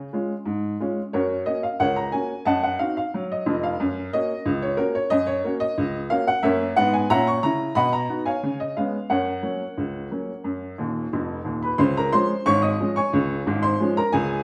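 Jaunty and playful, this short ragtime excerpt from a longer piece features a solo upright piano in straight 2/4, its woody, boxy tone sitting up front in a stone room's reverb, with a brief fill at 10.8 seconds leading into a new passage at 11.8 seconds.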